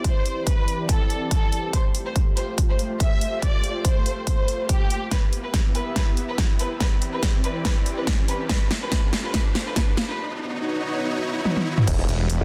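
Aggressive and heavy, this half-time wobble dubstep build-up at 142 BPM, cut from a longer piece, sets a dark, distant bowed violin section with tape echo and a lush supersaw pad, low-pass filtered and pumping from sidechain, over a punchy electronic kick and a big-room dance kit with a huge snare, while a background riser runs from 1.9 seconds until a saturated formant-sweep wobble bass with chorus arrives at 11.9 seconds and a growling, snarling distorted saw bass joins at 12.1 seconds.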